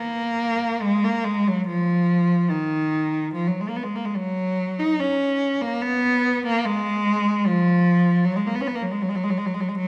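A single bowed cello sits up front in a wet, reverberant scoring-stage space, its tone warm and focused with a smooth top and vibrato. This mournful, lonely classical fragment for unaccompanied cello moves freely in G# dorian around 73 BPM in 3/4, with uneven, rubato beats that give it an expressive feel. Cut from a longer piece, it spans just under ten seconds and keeps the solo line between D#3 and D#4.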